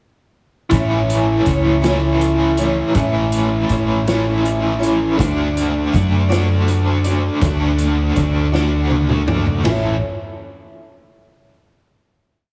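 A woody, boxy acoustic guitar strums open chord shapes in A major alongside an up-front, overdriven electric guitar riff with tremolo, a round hollow-body bass tied to the kick, and a vintage kit with dark cymbals and a pumping small-room feel, all entering at 0.7 seconds. This short folk rock and heartland rock piece moves slowly in a straight 6/8 at 54 BPM, nostalgic and hopeful, stepping from A to D at 5.2 seconds. A drum fill at 8.5 seconds leads into a final A chord at 9.7 seconds, and the whole track carries a heavily compressed, radio-like sound with light reverb.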